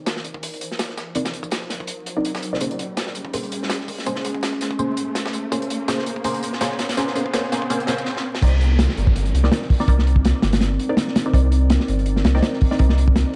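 A dark, crackling, vinyl-flecked jungle excerpt at 165 BPM, steeped in moody echo-chamber atmosphere, where a warbling, nostalgic pad and detuned, muted dub chord stabs drift over Cm9 and Bbm9 under filter sweeps while a riser builds through the opening 8.1 seconds. A saturated, tight-kicked breakbeat kit with dark cymbals drives up front, a compressed, high-tuned sampler kit sits in the background, and after a drum fill and stop the drop lands at 8.4 seconds with a round, deep sub bass entering beneath the returning Cm9.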